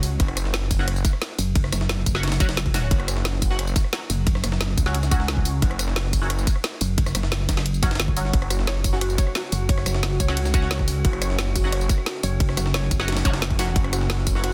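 A straight 4/4 drum and bass groove drives this dark, mechanical excerpt of technical drum and bass, built on a tight, up-front electronic kick, a layered kit with a woody snare, rim click, tambourine and bright hats, and a gritty, pitched-up breakbeat kit tucked in the background with high-passed snare, hats and ride. Two basses sit at the front: a thick, lush detuned saw bass holding a low F#, and a heavy, saturated pluck wobble bass that pulses with a mellow, sine-based weight, both treated with chorus. Above them, a nasal, band-passed chord stab with ring modulation cuts through brightly, colored by phaser, ensemble chorus and dub echo over a single F#m chord. Around 8.5 seconds a warbling, lo-fi pluck joins with evolving filter sweeps, sidechain pumping and dub echo, followed at 8.8 seconds by an eerie, metallic FM drone that breathes in the background through its own reverb and pumping. 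A faint electronic zap flickers at 13.3 seconds, and the whole piece sits dry, dense and heavily limited in a modern master.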